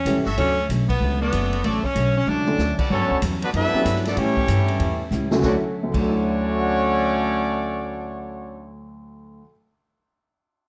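An edgy, close-miked saxophone section opens this joyful big band swing excerpt over woody pizzicato upright bass, quickly joined by a warm grand piano, a clean hollow-body archtop guitar in the background, a swinging drum kit with a punchy kick, and stabs from a brilliant, vintage-toned trumpet section, while the band hits an accent. A clear, tight trombone section enters with a second line at 2.3 seconds, just as the drums play a fill, and at 2.9 seconds a present, soft-attack trumpet section with light vibrato takes over the melody. The drums stop around 6.0 seconds, leaving horns, piano, guitar and bass in a moderate large studio reverb.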